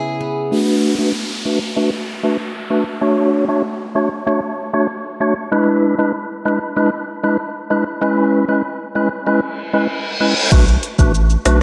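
Tough and hypnotic, this dancehall excerpt opens with a brief, boxy swing-style arpeggio on picked acoustic guitar. A mellow, flute-like tonewheel organ with key click and fast rotary speaker then carries the seventh chords through a long filter sweep, while a downlifter and reverse cymbal add electronic effects. At 10.5 seconds a thick, saturated sine sub bass and an electronic afro-pop drum kit with a deep kick, metallic hats, rim clicks, shaker and crash cymbal arrive up front, and a lush hall reverb soaks the dreamy mix.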